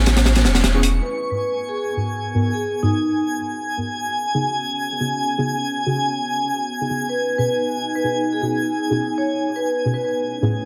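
A saturated, gritty breakbeat kit with a high-tuned snare and a thick triangle sub bass punch through the opening drop before falling away by 1.0 s. From there a dark, ringing vibraphone with 12-bit sampler grit and dub echo floats over a warbling, detuned tape-like pad, soft wave-folded chord stabs and a twinkling granular shimmer, giving this nostalgic, frenetic jungle fragment its hazy, echo-chamber glow.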